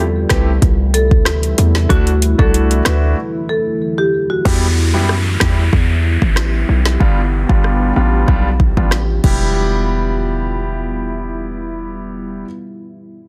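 Hard-hitting 808-style bass, punchy and heavy with a sine core and noise layer, drives this tough, hypnotic dancehall excerpt at 94 BPM in E minor, sitting up front beside an overdriven afro-pop drum kit with a deep kick, woody snare and metallic hats that plays from 0.3 to 9.4 seconds with a break at 3.2 seconds. A dark, smooth marimba carries the melody through delay until 4.4 seconds, while an intimate concert grand piano with audible action noise and long sustain pumps with sidechain compression alongside a deep, moody sawtooth pad thickened by chorus and built-in reverb. An electronic downlifter enters at 4.5 seconds as the harmony moves to E minor, all within a dense, heavily limited modern master.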